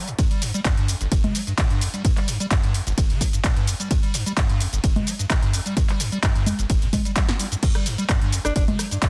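A dense, heavily limited modern master in digital ambience carries this trippy, driving acid house cut in G minor at 129 BPM, where a squelchy, resonant square-wave bass riff with filter sweeps, tube saturation, lush chorus and delay runs from the start, joined at 0.1 seconds by a punchy, tape-warm analog drum machine of congas, crash and ride cymbals, handclaps, hi-hat, rim click, shaker and snare with a short room on snare, clap and hats, and at 0.2 seconds by an up-front electronic kick, before a clear, jazz-style alto saxophone slips in a brief scooped, vibrato-laden D4 with dub echo at 8.4 seconds.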